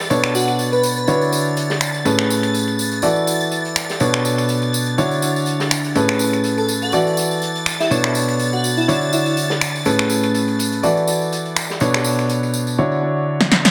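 A warm, deep-bassed concert grand piano riff leads this uplifting, euphoric piano house excerpt at 123 BPM in A major, joined by a punchy, tape-warm electronic snap-and-snare part, a saturated tambourine, a quiet acoustic drum kit played with bundle sticks in the background, shimmering vintage string-machine chords, and an airy, dreamy detuned lead that sings briefly at 0.3 seconds and returns at 6.6 seconds, all bathed in a wet spring reverb and an echo-heavy mix over a Bm9, Dmaj9, Amaj9, E9sus4 progression that closes on a drum fill at 13.4 seconds.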